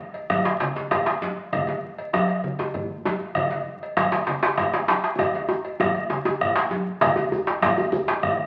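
Thick-skinned congas struck with hard hands and a tight, cracking, compressed djembe open this festive, powerful West African drum ensemble excerpt at 131 BPM in a straight 12/8, soon joined by a metallic cowbell in the background, a deep, dark bombo up front and a second, medium-tuned djembe with metal rattles sitting forward in the mix, before a drum fill from 5.2 to 7.0 seconds leads into a brief new section, all heard through a large, reverberant studio space and the crackle of a very old 78 rpm record.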